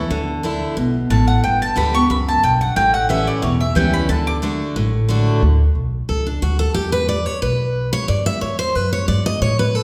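Bluegrass at a lively, rustic 180 BPM with a light swing in D major, where a bright, double-strung mandolin carries the melody up front until 4.4 seconds, a full-bodied, fresh-stringed dreadnought guitar picks the accompaniment and takes a solo from 5.4 seconds, and a thumpy, woody pizzicato upright bass holds the low end, all heard in a resonant hall reverb in this short cut from a longer piece.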